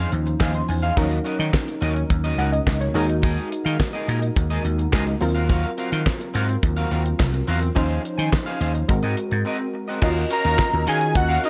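A dry, close-sounding cut from a longer piece of slick, danceable early-eighties boogie funk, moving at 106 BPM in a straight 4/4 through Eb dorian over chords like Dbmaj9/Eb, Ebm7 and a rootless Ab13/Eb. A growly, punchy slap bass and a damped 70s kit with a fat snare, tight kick, handclaps and gated reverb sit up front, while a dark, detuned polysynth comp with a filter pluck and a twangy, slightly broken-up guitar riff bathed in lush chorus fill out the groove. After a brief break at 9.5 seconds, a fat, warbling analog lead with vibrato enters at 10.3 seconds on an Ebm9 chord.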